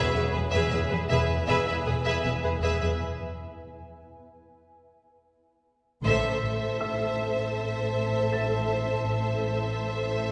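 Eerie and ominous, this short cut from a longer cinematic suspense score moves at 79 BPM in a straight 4/4, resting on an E chord before settling into A minor at 6.0 seconds. Two violin sections carry the upper strings, one singing the melody with a smooth, even vibrato while a richer section traces a second line just beneath it, and a close, expressive viola section adds accompaniment with soft attacks and portamento. Underneath, a dark, woody cello section and a studio double bass section share the bass, the cellos sounding distant and the basses bowed with light vibrato. A granular cloud pad holds sustained chords, its blurred, detuned tone evolving through a moving notch and its own reverb. After a break from 3.0 seconds, the ensemble strikes an accent at 6.0 seconds, and a mellow, boxy baby grand piano enters very quietly at 6.8 seconds with short-sustaining high notes for texture. 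The whole ensemble sits back in a concert hall with a long, wet reverb.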